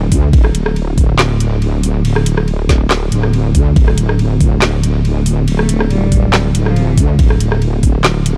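A heavy, brooding slice of deep dubstep in D minor opens on a saturated, detuned wobble bass with chorus, sitting up front at 140 BPM with a half-time, lightly swung feel. A knocking electronic kick and a garage kit of woody snare, metallic hats, handclaps, rim clicks and ride cymbal join almost at once, given a small-room character in a dark, dry production. At 5.6 seconds a bowed cello with vibrato drifts in behind them, its smooth-topped tone trailed by dub echo until 7.1 seconds.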